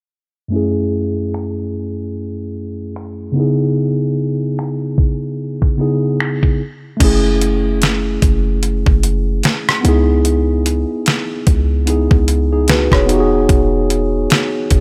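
A swung 16th-note groove at 74 BPM drives this longing, moody contemporary R&B excerpt: a mellow tine electric piano enters at 0.5 s and moves through F#m7 and C#m7 under a filter sweep, later arriving at Emaj7; an overdriven, detuned 8-bit drum machine re-recorded in a small room brings a thumpy kick, fat snare, hi-hat, finger snaps, rim click and crash from 1.3 s; and a deep, boomy 808-style bass with a sine tone and noise layer joins at 7.0 s, with every part up front in a dry, low-pass filtered mix.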